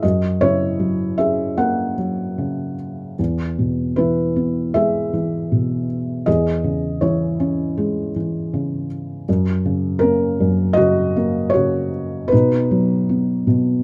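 A felt-muted upright piano, dark and intimate with audible action noise and short sustain, sits up front in a small, moderately reverberant room as it carries this wistful, reflective classical solo through a rubato 4/4 at 78 BPM, spanning E2 to F#5 over chords moving from F# through E and C#m/E back to F# before reaching B at 12.3 seconds in this 13.8-second excerpt cut from a longer piece.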